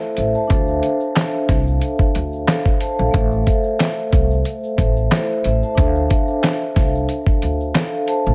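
A gritty, thumpy sampler-style soul drum kit with handclaps, hi-hat, kick and a medium-tuned snare sits up front in this reflective boom-bap hip-hop excerpt at 91 BPM with a light 16th-note swing, entering at 0.2 seconds together with a woody pizzicato upright bass, while a mellow, airy vibraphone played with soft mallets rings through cassette-tape haze and analog delay over Am and Dm7 chords, and a grainy egg shaker sits in the background of a small, echo-heavy room.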